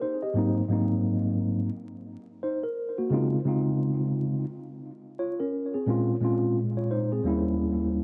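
Cassette-recorded at home with vinyl crackle and light reverb, this relaxed, cool hip hop passage at 87 BPM in Ab major, cut from a longer piece and swung on the sixteenths, features a mellow, clean tine electric piano played solo and up front through its built-in speakers, its tape echo coloring a progression from Ab9 to Dbmaj9, Bbm9 and Eb7b9.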